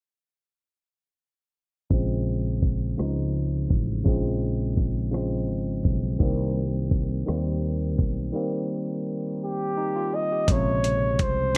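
Slow six-eight R&B at 56 BPM in Bb dorian, sultry and late-night, cut from a longer piece. From 1.9 seconds a barky, lightly overdriven tine electric piano played through a combo amp carries the chords, moving from Bbm7 to Cm7 and back, over a growly fretless electric bass and a dusty soul sampler-style drum kit with a thumpy kick, hi-hat and rim click, its gritty, compressed sound pushed into overdrive. A filter sweep runs through the opening section, and a break arrives at 8.3 seconds. At 9.4 seconds a breathy flugelhorn enters with a mellow, jazz-style solo, its scooped notes and vibrato carrying a slapback echo. The parts sit up front in a light reverb, with a low-pass filter softening the overall sound.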